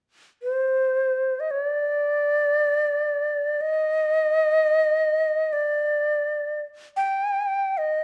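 A bright, airy shakuhachi enters alone at 0.4 seconds with a crisp, chiffy attack and vibrato, close-miked and up front as it moves between C5 and G5, floating in free time through this austere, calm fragment of Japanese traditional chamber music, set in a dark production with light reverb and tuned to A4 = 441 Hz.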